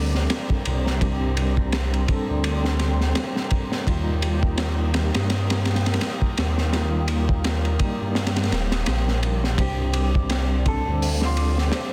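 Trip hop with a cinematic, smoky mood, built on a crunchy, gritty breakbeat kit with a high-tuned snare and a deep, rumbling detuned saw bass up front, while a tremolo tine electric piano with tape echo, a warbling dark ambient pad and a breathy wind-like texture sit behind, the kick dropping out from 8.2 to 9.6 seconds before a clean, fingered electric guitar melody and a delicate, tinkling, slightly out-of-tune music box enter at 9.6 seconds.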